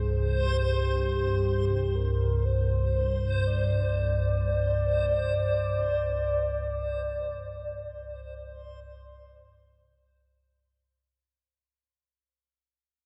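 Desolate and ominous, this dark ambient drone drifts in free time, an excerpt cut from a longer piece and tuned to A4 = 443 Hz over a held Csus2. Up front sits a deep, rumbling drone low in the register, its slow attack and long release giving a sustained, sawtooth-and-triangle weight colored by phaser and its own reverb, sounding until 11.7 seconds. Above it, a mellow horn-like synth lead fades in carrying a melody between G4 and D5, round and gently vibrato-touched, with chorus and delay softening its edges before it stops at 10.5 seconds. A reversed, swelling texture hovers on a single high C, dreamy, detuned and granular, drifting quietly behind the other parts as it fades out. The whole recording sits in a vast, echoing cathedral-like space with a long reverb tail and the hazy grain of cassette tape, and the music fades away from 6.2 seconds to the end.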